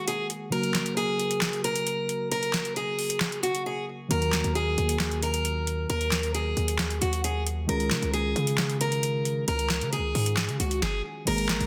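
A fingerpicked steel-string acoustic guitar carries the melody with bright, boxy tone, audible finger squeak and tape echo, over dark, muted synth keys with chorus, as a booming analog drum machine with a deep kick, crisp snare, metallic hats and handclaps joins almost at once in this menacing, brooding half-time trap excerpt at 134 BPM. A hard-hitting 808-style bass with a punchy, decaying sine tone enters at 4.1 seconds as the harmony moves to D#m and then C#add9. The mix is dense and heavily limited with light digital ambience, and a brief stop arrives at 10.8 seconds before the clip ends.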